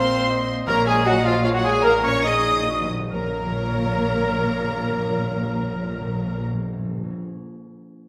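In a rubato triple metre that slows through its opening seconds, this quick classical-period movement for symphony orchestra sounds dramatic and urgent. The studio violin section carries the melody with a lush, focused, distant tone and vibrato. The chamber violin section, cor anglais, hollow concert flute and clarinet weave second lines; the clarinet falls away at 2.9 seconds. In the background, the studio viola section's smooth accompaniment and the tight French horn section's soft-attacked sustained chords fill the middle. Below them, the symphonic cello and chamber double bass sections hold a deep, expressive bass. Timpani played with medium mallets add a fill from 1.8 to 3.1 seconds, and the whole fragment sits in a wet scoring stage reverb.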